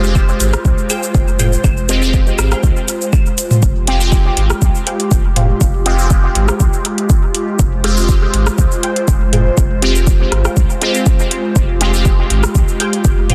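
Dub techno at 121 BPM in F minor, nocturnal and meditative, this excerpt rests on an Fmadd9 chord, with an airy, breathy pad sustaining chords under a juicy, detuned polysynth whose resonant filter sweeps color its chorused, phased stabs, which end at 12.1 seconds. A clean, smooth sine sub bass pumps against the up-front deep electronic kick, while a deep house kit of cabasa, metallic hi-hats and rim clicks trails dub echo, and analog-tinged electronic claves and toms, heard through a large room, sound mostly until 5.5 seconds. From 0.9 seconds a muted, wave-folded dub chord stab plucks in the background through phaser, ensemble chorus and echo, all inside a dense, heavily limited modern master with digital ambience.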